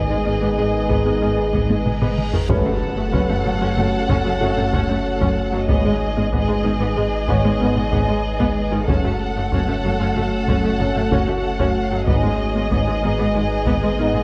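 Moving in a straight 5/4 pulse, this brooding, futuristic hybrid orchestral and electronic film cue sets lush bowed violins carrying an expressive melody over a second violin line, an intense viola section, smooth cellos and woody double basses, with mellow French horns holding chords, a distant trombone section that drops out at 2.1 seconds, a warbling lo-fi tape-like pad, a tine-like synth pluck playing arpeggios, a deep sine sub bass, close and dry taiko drums, a huge reverse cymbal and impact arriving at 2.1 seconds, and a felt-muted upright piano with audible action noise entering at 2.5 seconds, all moving between G#m and F#m and heard through a moderate scoring stage reverb and worn cassette tape with warbly pitch drift in this excerpt from a longer piece.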